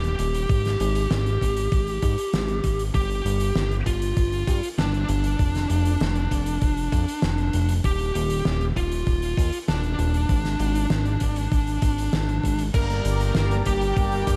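A fuzzy, distorted lead guitar with tape echo carries the melody over a fat, detuned sawtooth bass pumping with sidechain and an oversized, low-tuned acoustic kit of dark cymbals and a saturated snare with gated reverb in a bright stone room, joined at 0.5 s by a thumpy, sampler-style electronic kick, in this cinematic, driving 98 BPM synthwave excerpt in G phrygian, until at 12.7 s bold, chorused analog brass stabs and a shimmering vintage string machine arrive on a Gm chord, followed at 13.0 s by a retro pulse-width pad with 12-bit sampler grit.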